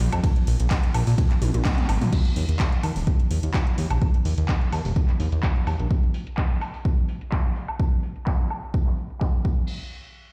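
This progressive house excerpt opens on a drop, with a fat, detuned sawtooth bass pumping against the sidechain and a deep house kit of crash, ride, claps, toms, woodblock and metallic hi-hats, all overdriven and low-pass filtered, before a punchy, layered kick arrives up front at 0.2 seconds. A drum fill and a full-band accent lead into the next section at 2.1 seconds, where a filter sweep moves over the drums and the evolving, thick bass drops out at 5.9 seconds. The emotional, expansive groove sounds as if it is played on a big sound system in a bare stone room, with only a little reverb.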